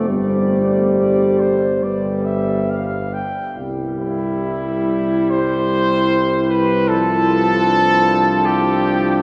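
A serene, lyrical classical excerpt for brass band, this hymn-like passage in C major moves in a gentle 4/4 at roughly 63-78 BPM with a rubato feel, cut from a longer piece. An up-front trumpet section carries the melody with a mellow, soft-attacked tone, smooth top and light vibrato, while a tight French horn section sits in the background on a second line, also touched with light vibrato. Beneath them a close-miked, dark euphonium and a brilliant but distant, roomy trombone provide accompaniment, and a clear tuba anchors the bass. All five parts play together throughout the 9.2 seconds, opening on a Gsus4 before settling onto C at 3.6 seconds and moving to Dm7/C at 6.9 seconds. The whole ensemble is heard from further back in a wet cathedral reverb with a long 7.2-second decay, giving the hymn a spacious, devotional glow.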